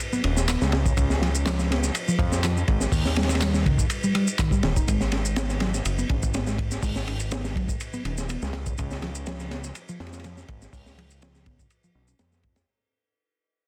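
A dense, heavily limited mix with light reverb frames this gritty, raw breakbeat section from a longer piece, where a crunchy, saturated acoustic break kit with a punchy kick, high-tuned snare and dark cymbals sits up front beside a fat, detuned sawtooth analog bass with a filter sweep, a round, amped hollow-body electric bass plays a picked riff through a low-pass filter and digital delay, and electronic handclaps and shaker re-recorded in a large room sit lower in the mix, all over a gentle 16th-note swing, until the opening drop gives way at 4.9 seconds to a fade-out.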